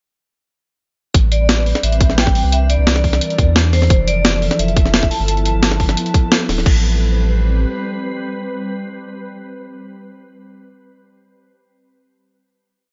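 A rolling two-step beat at 174 BPM, built from a tight, up-front electronic kick and a gritty, compressed sampler-style breakbeat kit with snare, hi-hats and crash, drives this lush liquid drum and bass piece in A minor, where a deep, round sub bass plays long gliding notes, a glassy, ethereal FM pad with ensemble chorus and built-in reverb sustains Am9, C9, Fmaj7 and G13 chords, and a metallic, ringing vibraphone with medium hard mallets and fast motor vibrato sings short motifs through dub echo, all in a digital ambience with a softened top end, until the drums stop at 6.7 seconds and the final Am9 chord rings out as the pad sustains until 10.2 seconds.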